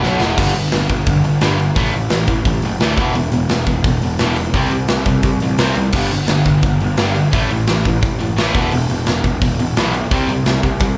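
A band playing live in one room, under light reverb, gives this short cut from a longer punk rock piece an energetic, rowdy feel in a straight 4/4. A drum fill opens the first 0.4 seconds on a big rock kit with a punchy kick, medium-tuned snare, bright cymbals and hi-hat, sitting up front with a big-room sound. From the very start two picked electric guitars play riffs in the background, one a bright overdriven semi-hollow guitar, the other a dark, sludgy distorted one. A growly fuzz bass, overdriven and picked, carries the low end with a direct and amped tone. The riffs cycle through power chords on G, A, E and C, repeating the pattern twice before the cut ends at 11.0 seconds.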